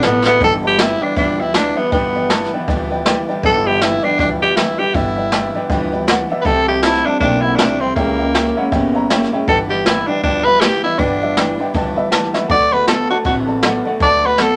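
Rockabilly with a retro, rowdy swing, cut from a longer piece: a raspy, gritty tenor saxophone carries the melody up front with scooped notes and light vibrato over a dark, boxy upright piano, a twangy, slightly broken-up electric guitar riff through a small old amp, a bright dreadnought acoustic guitar, a woody, thumpy pizzicato upright bass and a brushed drum kit with a boomy kick, all in a small room, with a piano fill at 11.4 seconds and a drum fill at 12.3 seconds.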